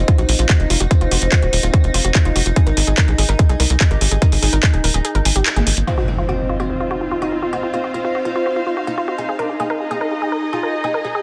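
Hypnotic and psychedelic, this psychedelic trance passage at 145 BPM in straight 4/4 sits in F phrygian and is cut from a longer piece. It opens on a drop where a tight, punchy sawtooth sequencer bass drives beneath an up-front layered electronic kick and a drum kit of handclaps and metallic hi-hats, the hats, snare and room darkened by low-pass filtering. Over this, a woody, wave-folded pluck plays a percussive riff through chorus and tape echo, while a plectrum-plucked fretless oud with doubled strings carries the melody through phaser and tape echo. An evolving, morphing wavetable pad holds sustained chords in the background, and the pad, pluck and oud all pump against the sidechain. The kick drops out at 5.0 seconds, a band accent lands at 5.5, and at 5.9 seconds an up-front impact marks the shift into a second section, where the bass and drums stop and a veiled, con sordino chamber string section enters with bowed vibrato, while the harmony moves from Ab5 to F5 and back to Ab5. 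The dense, heavily limited master carries only light reverb.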